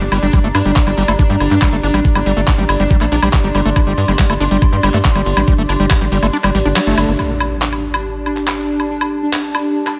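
Driving and hypnotic, this psychedelic trance cut at 140 BPM in G minor rides a knocking electronic kick and a tight, punchy sawtooth sequencer bass beneath a squelchy, resonant overdriven acid bass riff with distortion and tape echo, while a pulsing gated texture of detuned sustained chords and a warbling, nostalgic lo-fi pad, both chorused and pumping, float above, a garage drum kit adds metallic hats, handclaps and woodblock, and a grainy tube shaker sits in the background, until the kick drops out at 6.3 seconds and an electronic impact marks a new section at 7.2 seconds.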